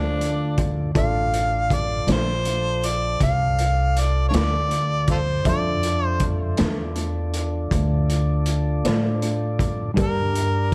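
An echo-heavy studio mix with light reverb carries this soulful, smoky slow blues excerpt in D minor at 53 BPM in 12/8, where a raspy, growling tenor saxophone sounds only until 0.8 s, a gritty garage drum kit with a boomy kick enters at 0.2 s, and an up-front harmonica, clear with vibrato, tongue slaps, scooped notes, overdrive and analog delay, takes the jazz-style melody from 1.0 s over a woody, thumpy pizzicato upright bass, a mellow tonewheel organ with key click on a slow rotary speaker, a polished upright piano in the background and a very quiet clean, fingered electric guitar, as the chords move from Dm to Gm near the end.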